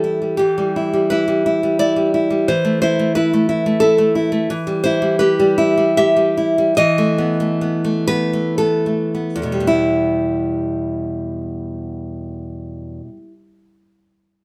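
A bright, fresh-strung nylon-string guitar, fingerpicked and placed up front, opens this wistful, intimate romantic piece for solo classical guitar in E minor and 3/4, tuned to A4 = 439 Hz and played with a rubato feel that drifts between 52 and 91 BPM. The harmony moves from Em through A5/E and B7/E over E in the bass, with the pace slowing from 3.5 to 9.7 seconds before a new passage returns to Em. Taken from a longer piece, the recording was captured live in one room with moderate studio reverb, and the guitar rings across its full range until it stops at 13.3 seconds.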